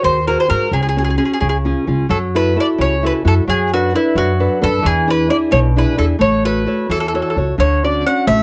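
Worn, warbling cassette tape with light reverb colors this short romantic, passionate Italian folk serenade in F# minor, which sways at 88 BPM in 6/8 as a bright, double-strung bowl-back mandolin picks the melody up front over a small, fingerpicked nylon-string guitar and a woody pizzicato upright bass, while the chords drift from G#7 through F#m7 and E7 to a closing Dmaj7.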